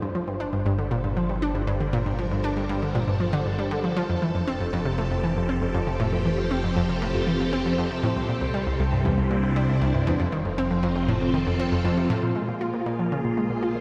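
The piece moves in a straight, steady 4/4 pulse driven by a repeating analog pluck riff, a hypnotic, mysterious slice of ambient, sequencer-driven space music cut from a longer work. That pluck sits up front with a round, detuned sawtooth-and-square tone, a fast attack and short decay, colored by chorus and an analog delay. Beneath it, a fat analog bass holds the low end with a thick, nasal, saturated character. A phased string machine, also up front, fades in over the first 12.2 seconds with swirling, warbling vintage chords shaped by ensemble chorus and phaser. Far in the background, an airy, breathy wind-like noise texture drifts with its own built-in reverb. The harmony moves from Gm7 through F and Cadd9 and back to F before shifting to Bbmadd9 at 12.2 seconds for a brief new section, all set in a wet, echo-heavy chamber reverb.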